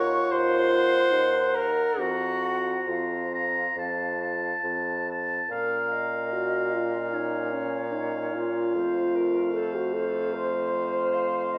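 Rubato 4/4 at roughly 67-78 BPM sets the pace for this slow, romantic classical movement for wind quintet in Bb minor, melancholic and elegiac in mood and cut from a longer piece. A pure, hollow, close-miked flute with vibrato carries the melody alongside a distant, roomy oboe second line, while a mellow horn with vibrato and a soft-attack clarinet fill the accompaniment above a bassoon bass with light vibrato. All five play throughout, with the second half opening at 5.5 s, and a wet recital hall reverb surrounds the ensemble.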